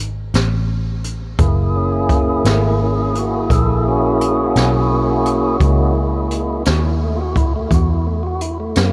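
Laid-back and rollicking, this slow 12/8 blues in F# mixolydian moves at 57 BPM. A dark, round, foam-muted picked electric bass opens it, and brushed jazz drums with a boomy kick, high-tuned snare and hi-hat join at 0.3 seconds. At 1.4 seconds a fat, clean tonewheel organ with key click, vibrato and a slow rotary speaker comes in on an F#9 chord, and the whole mix is soaked in a huge, dreamy reverb.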